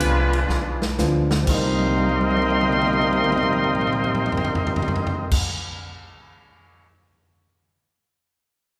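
This short excerpt of sultry big band swing in C minor opens with the full ensemble at 122 BPM in a lilting 4/4 swing, over a G7b9 chord. A clear trumpet section carries the melody up front with vibrato and a soft attack, giving it a vintage jazz colour, while a mellow trombone section plays a tight second line beneath it with lighter vibrato. A woody pizzicato upright bass holds down the low end, and a concert grand piano with deep bass sits in the background as accompaniment. The polished, airy drum kit, with its punchy kick and medium-tuned snare, is placed up front and plays fills nearly throughout as the harmony settles onto Cm11 at 1.5 seconds. The horns, bass and piano drop out by about 5.6 seconds, leaving the drums alone until 6.9 seconds, all wrapped in the lush reverb of a recital hall.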